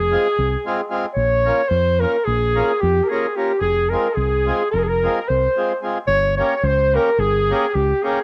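A warm, punchy clarinet with a smooth top carries the melody up front in F minor from the first beat, as a clear, vibrato-tinged trumpet traces a second line in the background, a round, dark fingered electric bass anchors the low end, and from 0.1 s a reedy, hollow, vintage, band-limited accordion fills in the chords beneath them, giving this bittersweet, restless Balkan wedding-band fragment in 9/8 at 220 BPM a cassette-worn tint on the clarinet, trumpet and accordion, all set in a moderate spring reverb with a homemade tape character.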